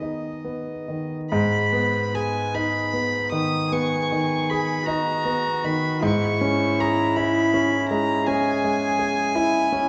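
A rich, floating violin carries the melody up front in this melancholic, solemn excerpt from a slow romantic piano trio movement in G# minor, unfolding in a rubato 12/8 at 45-56 BPM over an intimate grand piano with audible action noise and long sustain, while a smooth, soft-attacked cello enters at 3.7 s with a quiet second line, the trio set in a wet recital hall.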